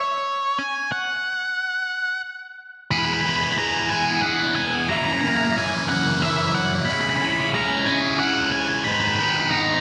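A dark, fuzzy octave-fuzz lead guitar carries the melody by itself through distortion and tape echo before a bright, double-tracked cranked stack guitar enters at 2.9 seconds with an overdriven, phased riff, launching a build-up over E, F#7, C#m7 and G#m in this euphoric, hopeful E lydian rock excerpt at 60 BPM in 6/8, all set in a lush hall reverb with a big arena sound.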